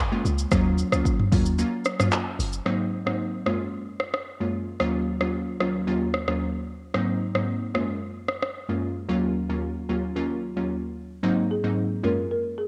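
A sultry, smooth afrobeats fragment opens on an up-front glassy wavetable pluck with chorus and cassette-tape color, joined by a deep, round log drum bass that stops at 2.6 seconds and an electronic afro-pop kit of deep kick, dark hats, handclaps, rim click, shaker and toms that runs to 8.5 seconds, before a dry, woody folk marimba melody enters at 11.5 seconds over Ab7 and Gbmaj7 chords in a spring-reverb home cassette recording.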